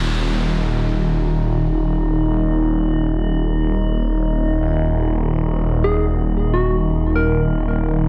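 A swirling, thick detuned saw bass with phaser sits up front on a low Eb throughout this dark, heavy drum and bass fragment in free time and Eb minor, while a very quiet, moody analog pad holds sustained chords above it. An electronic downlifter opens the first 1.8 seconds, and from 0.4 seconds an eerie, metallic inharmonic drone with chorus, phaser and its own reverb hangs over the Ebm harmony. At 5.8 seconds a round, gentle, keys-like FM lead with tape echo and chorus plays a short, warbling melody, all within a dense, heavily limited modern master with light reverb.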